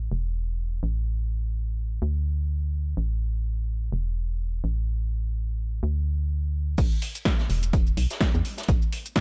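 A dark, small-room sound frames this soulful, energetic piano house cut at 126 BPM with a light swing, where a hollow, percussive, organ-like FM bass pumps up front on its own until the drop at 6.8 seconds brings in an overdriven, punchy electronic kick, an analog drum machine carrying crash, hi-hat, shaker and snare, and a natural vintage kit with rolled-off hi-hat and snare sitting in the background, before the bass stops at 8.8 seconds.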